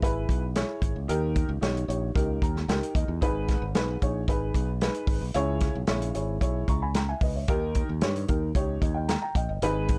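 A straight four-beat groove from a roomy soul drum kit with a tight kick, snare and hi-hat drives this urgent, passionate 1960s-style soul fragment, as a bright fingered electric bass holds down the low end and a dark, woody, slightly detuned upright piano comps the chords, breaking into a short fill at 2.2 seconds, all in a dry, dark, warm mix.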